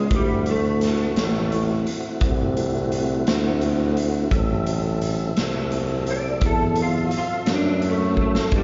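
Rolling in a straight 12/8 at 57 BPM, this swaggering, rollicking slow blues in D mixolydian sets a slightly broken-up, compressed electric guitar solo with slapback echo over sustained tonewheel organ chords colored by key click and a rotary speaker, while a clear, vibrato-laden tuba carries the bass up front and a gritty, saturated garage drum kit punches through a fill at 8.2 seconds, all heard as a live club gig through the venue's PA over a single D7 chord.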